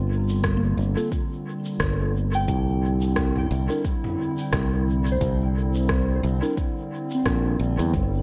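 Ambient dub at 88 BPM in 4/4, with a light swing on the sixteenths, this short excerpt cut from a longer piece feels deep and spacious as it moves from Gm7 to C9 at 2.5 seconds. A warbly, detuned tape-like pad holds sustained chords throughout, its slow attack, chorus and built-in reverb giving it a nostalgic, lo-fi haze. Up front, a bright, punchy fingered electric bass with tube saturation anchors the low end, while a soft, pure FM synth bell traces arpeggios in the background through chorus, phaser and dub echo. An organic electronic kit of rim clicks, shaker and toms comes in at 0.3 seconds, followed at 0.4 seconds by a deep electronic kick, both re-recorded in a large room, with the kit's hits trailing dub echo. From 1.0 to 6.5 seconds a mellow, clean tine electric piano adds echoing stabs from the back of an echo-heavy mix that otherwise carries little reverb.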